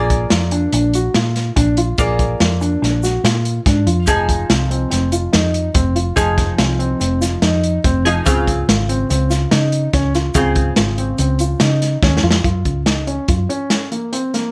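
This progressive instrumental band piece drives forward in an uneven five-beat meter with a straight, intricate feel, heard as a short cut from a longer work. A crunchy breakbeat drum kit sits up front with a tight kick, medium-tuned snare and hi-hat, its saturated, gritty sound rolled off at the top, while a grainy, bright egg shaker stays in the background. A round, dark hollow-body bass anchors the low end, and a mellow baby grand piano plays arpeggios with audible action noise and a vintage, intimate character. A clean, compressed archtop guitar, picked and double-tracked, adds accompaniment beneath them, all under a light reverb. The harmony moves from Bb through Fm7 to Dbmaj7, and after a drum fill at 12.0 seconds, the guitar drops out and the music shifts to Gbmaj7 at 12.5 seconds as the piano continues to the end.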